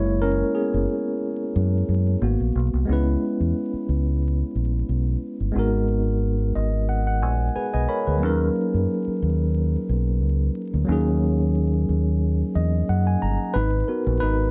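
This sultry, introspective R&B fragment opens on a clean tine electric piano solo over G# minor-flavored chords such as F#9 and G#m9, with a round, direct, up-front fingered dub bass holding the low end, and the piano adding fills at 6.2 and 12.2 seconds while a lightly swung 90 BPM groove moves through C#m7 and D#m7 under light reverb and a dark, vinyl-crackled production.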